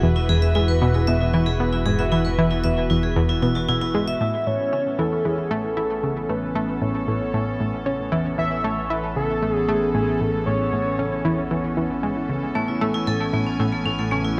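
A bright, up-front analog pluck drives this expansive, cosmic stretch of sequencer-driven space music, its round sawtooth-and-square riff with a sub octave carrying chorus, 12-bit sampler grit and tape echo at a straight 115 BPM in 4/4, moving from Eadd9 to Aadd9 at 4.2 s. Beneath it an evolving, warbling wavetable pad holds long chords while a fat, detuned sawtooth bass sits low on E1, and a ringing, metallic vibraphone struck with hard mallets plays arpeggios at the start and again from 12.6 s. Between 4.2 s and 12.3 s a shimmering, retro pulse-width lead sings a mellow melody with vibrato, all set in a moderate plate reverb, in a passage cut from a longer piece.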